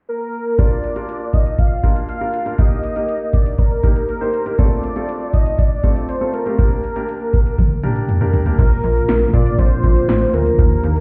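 Bright and upbeat, this synth-pop fragment cut from a longer piece moves at 120 BPM in Bb major, with a velvety, detuned synth lead carrying the melody through chorus and delay over a clear, polished baby grand piano and a punchy analog drum machine with a deep kick and metallic hats sitting up front. After a drum fill at 7.6 seconds, the piano drops out at 8.6 seconds as a swirling, phased sawtooth pad and a snappy, metallic FM bass arrive. The whole mix sounds muffled, as if heard through a wall, wrapped in a stone room reverb.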